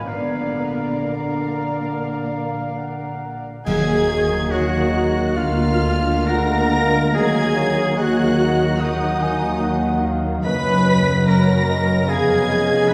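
Classical slow romantic movement for symphony orchestra in Eb minor, a melancholic, yearning passage cut from a longer piece, moving in rubato 4/4 at 64-75 BPM, with a focused violin section carrying the melody high above lush string sections while a clear oboe, dark, distant clarinet, a background violin section and, until 3.3 s, a pure concert flute weave second lines. Violas supply close accompaniment, a punchy French horn section holds sustained chords, and woody cellos and double basses anchor the bass under harmony moving from Bb through Ebm, Bb7/D and Gb to Db7/F. At 3.7 s an orchestral accent brings in round, soft-mallet timpani on Eb3 and dark clash cymbals with concert bass drum, all bathed in a wet church reverb.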